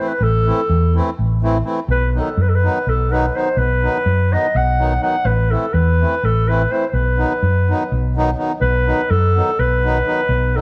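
A mellow, distant clarinet carries the restless, fiery melody in classical style over close-miked, reedy accordion accompaniment from the start of this Balkan wedding-band excerpt in 7/8, joined at 0.2 seconds by a round, amped hollow-body electric bass sitting up front, all within a dark production touched by light reverb.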